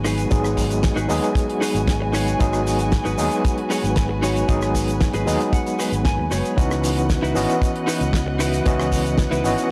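A straight 4/4 groove from a tight, dry kick drum entering at 0.3 seconds and a damped 70s kit of hi-hat, rim click, shaker and fat snare in small room ambience drives this sleek, sensual nu-disco excerpt, where an up-front, gritty overdriven tine electric piano with fast tremolo, sidechain pumping and tape echo carries the accompaniment over a round, dark fingered electric bass and veiled, con sordino muted strings that also pump, while a clean, direct-recorded electric guitar riff with lush chorus and tape echo breaks into a fill from 5.0 to 6.6 seconds as the harmony moves from G#m7 to C#m11.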